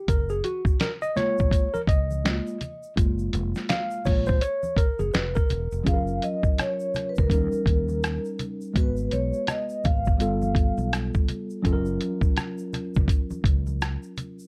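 A swung 83 BPM groove in 4/4 anchors this cool jazz-hop clip, led by a muffled, compressed sampler-style drum kit up front with a thumpy kick, medium-tuned snare, rim click and hi-hat, over a round, dark fretless bass and a quiet layer of bright shaker and soft-handed congas. A worn, slightly out-of-tune tine electric piano in plate reverb features first in F# major, and then a mellow, ringing vibraphone with soft mallets and motor vibrato carries the melody from 5.9 to 10.9 seconds as the chords move through D#7, G#m7 and G9 before settling back on F#maj7. The production is dark and warm with light reverb, and the clip is cut from a longer piece.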